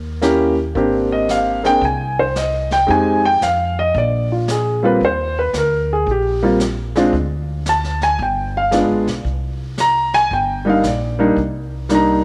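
Jazz piano trio in C minor, a moody, swinging 12-second excerpt at 113 BPM in 4/4 with a firm swing on the eighths, drawn from a longer piece and set in a small room with light reverb. An intimate, up-front concert grand carries the melody from 0.2 seconds, its action noise audible and its low end deep, over a woody pizzicato upright bass on steel strings that starts at 0.0 seconds. A distant, roomy brush kit with a punchy kick, medium-tuned snare and rolled-off top sits back in the mix as the harmony moves through rich chords such as Abmaj9#11 and G7b9 before settling on Cm7.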